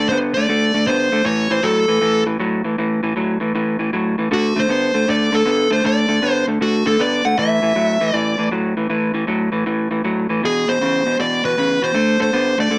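Laid-back and soulful, this swung blues excerpt moves at 157 BPM in 4/4, its power-chord changes cycling through D5, A5 and E5 over 12.8 seconds. A fingered electric guitar through a small old amp carries the low riff with a slightly broken-up, lo-fi, compressed tone, while a dark, overdriven picked lead guitar sings the melody above it. Both guitars sit up front in a moderate studio ambience.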